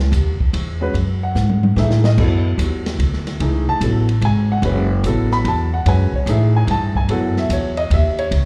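A swinging 3/4 pulse at 146 BPM drives this short cut from a longer modal jazz piece in F# dorian, searching and spiritual in mood, resting on a single F#m9 chord. A woody, thumpy pizzicato upright bass sits up front with gut-string weight, while an intimate baby grand piano comps with audible action noise and an open acoustic drum kit of dark cymbals, a punchy kick and a medium-tuned snare adds a fill at 1.4 seconds. The sound is that of a live club gig heard through the venue's PA, with light reverb and a small-room ambience.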